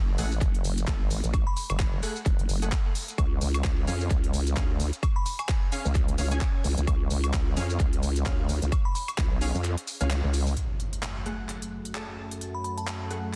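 A dense, heavily limited modern mix with little reverb opens this gritty, swaggering bass house excerpt, set at 130 BPM in 4/4 with a 57% swing on the sixteenths and centred on F# harmonic minor. Up front, a nasal, saturated vowel-sweep wobble bass with chorus and overdrive pumps against the sidechain. Alongside it sits a punchy, overdriven electronic kick, while a garage kit of crisp hats, handclaps, shaker and woodblock carries a tape-tinged room sound. Bold, detuned sawtooth stabs in the manner of an orchestra hit punctuate the groove with their own reverb and delay, and a glassy, crystalline FM bell warbles through brief phrases between G#5 and B5. The harmony moves from F#madd9 to C# until the kick drops out at 9.6 seconds. At 10.6 seconds an electronic impact hits, the bass stops, and an evolving, detuned sawtooth pad with a slow filter swell takes over the sustained chords back on F#madd9.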